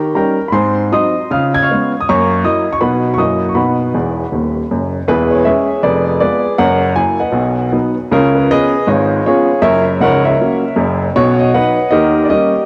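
Stride piano jazz at 158 BPM in B major, this exuberant, swinging passage cut from a longer piece features a solo upright piano with a woody, intimate tone, audible action noise and long sustain, placed up front and touched by analog delay. A piano fill at 3.9 s leads into a new section at 5.1 s, where the chords move from C#m/E through a diminished seventh and dominant sevenths back home to B. The home cassette recording is bathed in a lush, moderate hall reverb.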